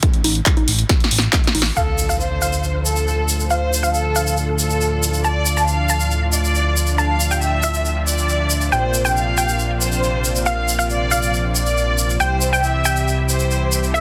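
This uplifting trance excerpt drives at 138 BPM in a straight 4/4 in D minor, opening with a punchy, tape-warm electronic kick and an analog drum machine carrying congas, handclaps, hi-hat and snare. A drum fill from 0.9 seconds leads into the main section at 1.8 seconds, where both drum parts fall away. A fat, thick analog bass with tube saturation and sidechain pumping sits up front from the start and carries through to the end. At 1.8 seconds an electronic impact sounds in the background as the full arrangement arrives: a detuned supersaw stab with delay and a filter sweep, a rich symphonic violin section with smooth vibrato and delay, a very quiet bright unison pluck, an airy chorused pad with sidechain pumping, and a grainy tube shaker recorded in a live room. The harmony moves from Dm to Bbadd9 at 8.7 seconds and then to C, giving the soaring lift a bittersweet edge. The master is dense and heavily limited, with light reverb.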